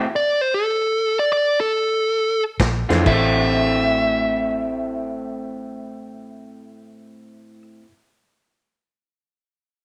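This brief cut from a smoky, brooding electric blues shuffle opens with a lo-fi, slightly broken-up electric guitar sounding at the very start, and a smooth, overdriven lead guitar soon takes the melody over a stop-time passage that slows down. At 2.6 seconds the band arrives on a Bb7 chord: a round, foam-muted fingered bass joins, along with a vintage drum kit whose punchy kick, snare, hi-hat, crash and dark, rolled-off cymbals are heard only until 3.2 seconds. At 2.9 seconds the rhythm guitar returns with its riff, and a woody upright piano comes in very quietly behind it, just before the harmony settles on A minor at 3.1 seconds. The dark lead stays up front in its higher register, carrying the swung feel until 7.6 seconds. Light reverb and studio ambience give the whole band a vintage studio room sound.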